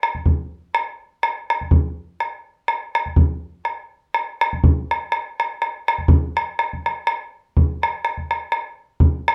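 Celtic folk in a dark, lively and wild mood at 123 BPM in 3/4 with a light swing, this excerpt features a lone bodhran, damped and tight, sitting up front in a live room with light reverb, playing through an opening section before shifting to a new one at 6.1 seconds and running to 9.3 seconds.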